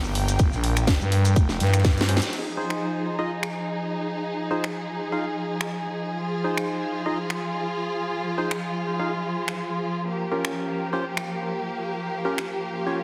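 Bouncy and gritty, this bass house passage opens over a bowed string section holding smooth, vibrato-tinged chords while a thick, growling FM bass with tube saturation and a filter sweep pumps beneath a tight, layered electronic kick, a very quiet acoustic kit with ride cymbal, and a garage kit of cracking snare, hi-hat, shaker and finger snaps. The electronic kick drops away at 2.0 seconds as a drum fill builds, and a hollow, ring-modulated organ stab with subtle chorus and digital delay enters at 2.1 seconds, just before the fill reaches a band accent at 2.2 seconds, where the bass falls away. From there the stab pumps against the strings and garage kit. The whole cut carries a heavily compressed, radio-like sound in a moderate digital room reverb, and it is cut from a longer piece.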